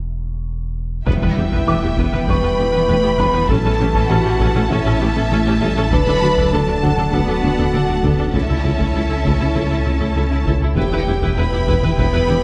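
A tense, relentless hybrid orchestral and electronic film cue opens on a deep sub bass and a muted, boxy felt piano with audible action noise. At 1.1 seconds a huge, bright impact ushers in a full band: lush vibrato violins carrying the melody and a second line, rich violas, close cellos and soft-attack double basses, mellow vintage French horns holding chords, a distant tuba, heavy-stick taiko, a squelchy phased blip pluck arpeggio and a gliding portamento synth bass riff, with a dark, evolving organ-like pad entering at 1.9 seconds, all over chords moving from A/E to Em in a moderate scoring-stage reverb.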